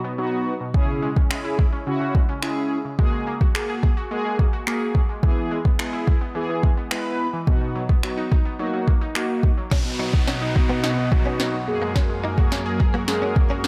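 Up front in this carefree, upbeat dance-pop excerpt, a smooth R&B drum kit with soft kick, sharp snare, finger snaps and crash cymbal carries an overdriven edge beneath glassy, crystalline wavetable pluck arpeggios and a round, brassy synth brass accompaniment that pumps with the sidechain, until at 9.7 seconds a build-up and drum fill bring in a shimmering pulse-width pad, a twangy, clean direct-recorded electric guitar riff and a downlifter in the background, set in a light reverb.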